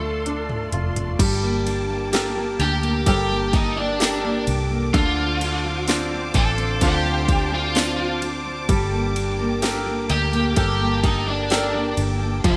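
An overdriven lead guitar, up front and picked through a small cranked amp with lush chorus and digital delay, carries the melody in this heartbroken, longing pop ballad excerpt, over a polished concert grand piano with a subtle chorus and a woody, fingerpicked nylon-string guitar whose analog-chorused arpeggios sound dark and full-bodied. Distant, bowed strings hold vibrato-rich chords while a round, foam-muted electric bass anchors the low end, and a punchy electronic drum kit with a cracking snare and gated reverb enters at 0.3 s, with a fill running through the opening bar, joined by a jingly tambourine in the background from 2.1 s. The bright 1980s-style digital production sits in a plate reverb and small-room ambience as the harmony moves between Dm, Gmadd9 and Dm7.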